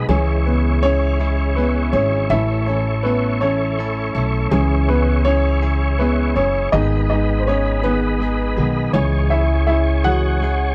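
A six-eight pop ballad in C# minor at a slow 54 BPM, aching and melancholic, where a slightly detuned, woody upright piano carries a solo from 0.1 s over a C#m–A–C#m–G#m–C#m progression, backed by twangy, compressed arpeggios on a clean direct-recorded electric guitar, thumpy pizzicato gut-string upright bass sitting up front, and sustained tonewheel organ chords with key click, chorus vibrato and a fast rotary speaker, captured in a dry, close 1970s-style studio sound with light reverb and cut from a longer piece.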